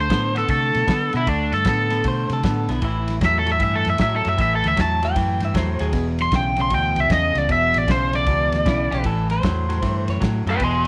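A swung shuffle in four drives this gritty, soulful electric blues excerpt, where an up-front, crunchy overdriven guitar carries the melody with slapback echo over a bright, clean semi-hollow guitar riff with a warbly pitch drift, a round, foam-muted vintage fingered bass and a smooth soul drum kit with tight kick, snare and dark ride cymbal, while a lo-fi, slightly broken-up guitar through a small old amp adds a second line from 2.1 to 6.1 seconds and returns at 8.7 seconds, set in a small room with light reverb.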